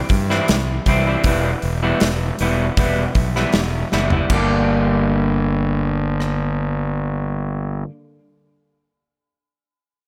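A small room's light reverb frames this brooding, dark excerpt of quiet-loud alternative rock, where a growly, overdriven fuzz fingered bass and a big acoustic rock kit with punchy kick and bright cymbals sit up front. An electric guitar through a small old amp plays slightly broken-up arpeggios, bathed in spring reverb and tape echo, over chords moving from C to Em. A drum fill at 3.9 seconds leads into a second section on Gm at 4.3 seconds, with the drums stopping at 6.4 seconds while bass and guitar carry on.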